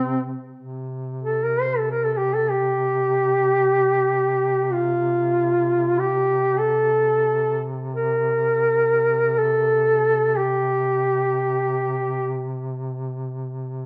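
Unmeasured and in free time, this short fragment of a Caucasian folk lament unfolds in a solemn, mournful mood, tuned slightly low to A4 = 438 Hz. Two duduks carry it: one sings the melody between C4 and C5, mellow and up front yet with a distant, roomy quality and a folk-style vibrato. Beneath it, a second duduk holds a quieter drone on C3, its tone soft in attack and smooth at the top, with scooped notes and its own gentle vibrato. The melody falls away at 12.5 seconds, leaving the drone to sound alone until 13.9 seconds. A moderate recital-hall reverb and a dark production give the pair a grave, enveloping setting.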